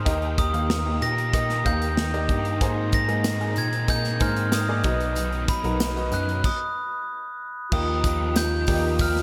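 A ringing glockenspiel struck with hard plastic mallets carries the melody up front through a diffuse ambient delay, over a bright, woody upright piano, a crunchy overdriven guitar riff with ensemble chorus, and a bell-like tine electric piano playing the bass through a phaser. This anthemic piano-driven pop excerpt in Eb major moves at 94 BPM in a straight 4/4, with an up-front acoustic drum kit with a tight kick entering at 0.1 seconds and a jingly tambourine joining in the background at 2.9 seconds. After a stop from 6.4 seconds, a dark, distant French horn section enters at 7.7 seconds as the chords return to Eb, all bathed in a dreamy, lush hall reverb.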